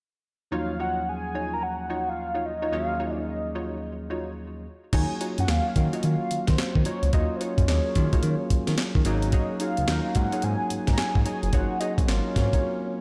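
Bouncy and slick, this new jack swing R&B excerpt moves at 109 BPM in Eb minor with a swung sixteenth feel, opening on a velvety, dark synth lead drenched in chorus, tremolo and tape echo, a bell-like tine electric piano with lush chorus, and punchy, detuned polysynth stabs over an Ebm9 chord. At 4.9 seconds a smooth, saturated sawtooth bass and a gritty, compressed breakbeat sampler-style kit come in up front, with a thumpy kick, handclaps, hi-hat, snare and crash, before the harmony shifts to Ab7sus4 at 9.1 seconds. A short break at 12.6 seconds closes this dreamy mix, which is soaked in plate reverb.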